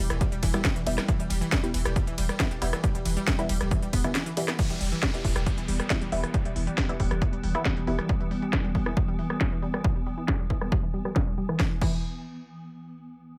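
A punchy, up-front electronic kick drives a straight 4/4 pulse at 137 BPM, joined by a tape-warm techno kit of cracking snare, smooth hi-hats, ride, crash and rim clicks, in this dark, intense stretch of peak-time techno in E minor cut from a longer piece. A lush, detuned sawtooth unison pluck riff with dub echo and a muted, phased dub chord stab pump against a thick, saturated sub bass that holds E1 until 8.0 seconds. From 4.6 seconds a downlifter falls as the drums are filter-swept, and at 5.6 seconds a swarming, granular drone swells in slowly, tense and evolving, under light reverb until the harmony drops away near the end.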